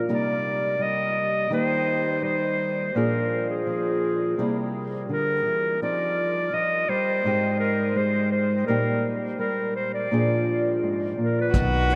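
A straight, unhurried 4/4 pulse at 84 BPM carries this intimate, heartfelt acoustic folk-pop ballad in Eb major, which reaches us as an excerpt from a longer piece. From the start, a clear, soft-attacked clarinet sings the melody up front in a classical, solo style, while a dark, small-sounding nylon-string guitar is fingerpicked close by, its occasional finger squeak adding a human touch. The harmony moves through chords such as Cm7, Abmaj7 and Bb7 as the pair unfolds in a vast, echoing space drenched in huge, wet ambient reverb. At 11.5 seconds, a pizzicato upright bass with a woody tone, a distant, floating bowed cello played sul tasto with a pure, warm voice, and a vintage brush kit with a punchy kick and rolled-off top all enter together. The fragment closes at 12.0 seconds, just as the fuller band arrives.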